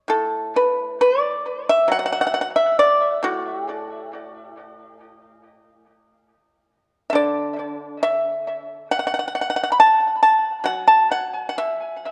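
Rubato phrasing with uneven beats drifts around 68 BPM in 4/4, giving this flowing, pastoral fragment of Chinese traditional solo plucked-string music an elastic, breathing pulse. A lone pipa, played with fingerpicks and placed up front, carries the whole passage from 0.1 to 12.1 seconds across a span from A2 to B5, its dry, percussive attack paired with tape echo. A moderate recital-hall ambience and a dark production frame the instrument, leaving the impression of a moment lifted from a longer piece.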